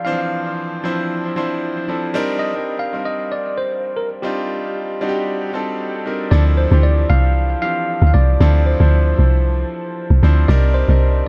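This echo-heavy, lightly reverberant amapiano recording is a short cut from a longer piece, soulful and deep in a straight 4/4 feel. A clean tine electric piano carries the melody from the start, its tone coming through built-in speakers and trailing dub echo. Beneath it, a bright concert grand piano plays the accompaniment with a brilliant, polished presence, also washed in dub echo, as the harmony moves between Dm9 and Cm9. At 6.3 seconds the drop arrives and a log drum bass enters up front, round, dark and percussive, its FM tone carrying a noise layer, a fast attack and a decaying tail. The log drum holds the bottom under the two keyboards until 11.2 seconds, just before the cut ends at 11.3 seconds.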